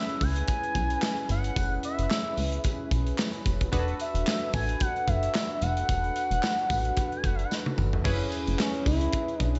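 Danceable and funky, this short cut from a longer early-eighties boogie funk track moves at 111 BPM in 4/4 with a light 16th-note swing, set in F# minor. An up-front synth lead carries the melody with a smooth, nasal, wave-folded tone, vibrato, chorus and slapback echo. Beneath it, a bright polysynth comp with a filter sweep and the same chorus and slapback echo works through F#9sus4 and E9sus4 chords. A plucky, dark analog bass with a moving notch sits up front beside a punchy acoustic drum kit with kick, medium-tuned snare, hi-hat, handclaps, toms and crash, and a very quiet, jingly tambourine adds close, dry shimmer. A drum fill from 7.5 to 8.1 seconds leads into a new section where the harmony returns to F#9sus4, all framed by a moderate concert-hall reverb and a big arena sound with a rolled-off top end.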